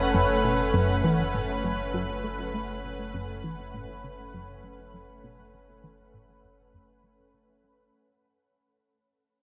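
A straight 4/4 pulse drives this mysterious, cosmic stretch of sequencer-driven space music, cut from a longer piece and fading out across its roughly 8 seconds over a single minor chord. A tight, detuned sawtooth sequenced synth plays a driving, evolving riff through chorus and analog delay while a filter sweep works on it, beneath a thick, airy unison pad held up front with chorus and shimmer reverb. A round sine sub bass sits deep below, and a twinkling granular texture with an octave-up shimmer sparkles on top, all inside a vast, echoing reverb whose highs are rolled off.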